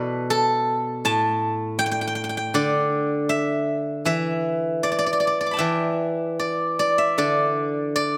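This Chinese traditional solo for plucked strings unfolds in a flowing, serene mood, cut from a longer piece and lasting about 8.2 seconds. A steel-string zither, played with fingerpicks, carries the music alone from start to finish, moving in a free, rubato feel around 78 BPM in 4/4 and sitting in the D zhi mode. Its acoustic tone is bright and silvery, spanning A2 to D6 and placed up front in the sound. Each plucked note rings into the wet reverb of a recital hall, whose 1.7-second decay lends the solo a spacious glow. The opening section runs to 7.2 seconds, after which the zither continues to the close.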